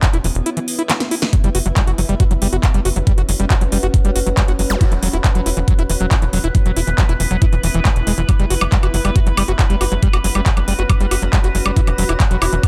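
A driving, hypnotic psychedelic trance excerpt at 138 BPM in straight 4/4 rides on a knocking, up-front electronic kick that drops out between 0.5 and 1.3 seconds for a drum fill, with a drum kit of cracking snare, metallic hi-hats, handclaps and woodblock, a tight, punchy, saturated sequencer bass under a squelchy, screaming distorted acid line with chorus and delay, a sustained ring-modulated drone with moving overtones entering at 2.9 seconds, a cloudy, granular pad drifting in the background, brief electronic zaps and a riser, and E5 and F#5 chords alternating in a dry, close mix.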